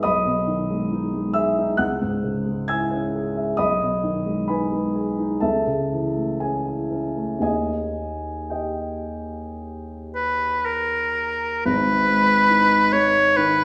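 A dark, mellow grand piano opens this melancholic romantic duo alone, its long sustain carrying slow, rubato chords in G# minor at around 54-72 BPM through a church or concert hall reverb. At 10.2 seconds a clear oboe enters up front with a yearning melody and light vibrato, singing over the piano as the passage moves into a new section at 11.7 seconds before the cut at 13.6 seconds.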